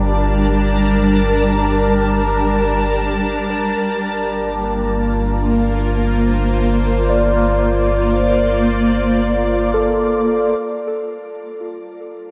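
Bathed in a wet spring reverb and heavy echo, this reflective, melancholic ambient fragment in free time and G minor rests on a Gm7 chord, where a bright, ethereal shimmering pad holds sustained chords up front with chorus, phaser and shimmer reverb, muted felt-like synth keys fade in with soft, dark arpeggios in the background through 10.6 seconds, and a round, deep analog bass sustains a low G until 10.5 seconds.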